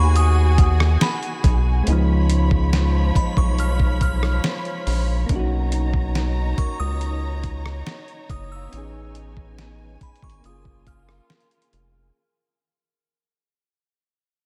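A rubbery, bouncy square bass sits up front in this late-night, moody contemporary R&B piece, moving at 70 BPM in straight 4/4. A gritty, sampler-style drum kit with a thumpy kick, fat snare, hi-hat and rim click enters at 0.2 seconds and stays compressed and close. Soft, round electric-piano-like synth keys with chorus carry the accompaniment, while a distant studio string section holds bowed chords with vibrato and portamento. Above them, a glassy, crystalline synth bell plays the melody with chorus and a diffuse ambient delay, and a very quiet, slightly out-of-tune celesta adds delicate texture from 0.6 seconds. The harmony drifts from G#m9 through C#7, Bmaj9 and Amaj9#11 to F#maj9, all inside light reverb and digital ambience, and the whole passage is a fade-out cut from a longer piece.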